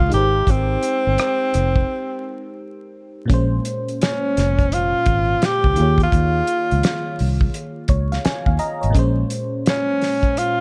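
A breathy tenor saxophone with light vibrato and scooped notes carries a sultry, soulful neo-soul R&B melody over glassy, bell-like FM electric piano with chorus, a round, foam-muted fingered bass and a cloth-damped drum kit with a fat snare, through a break at 1.9 seconds and a piano fill at 7.5 seconds, all set in a dark, small-room production with vinyl crackle.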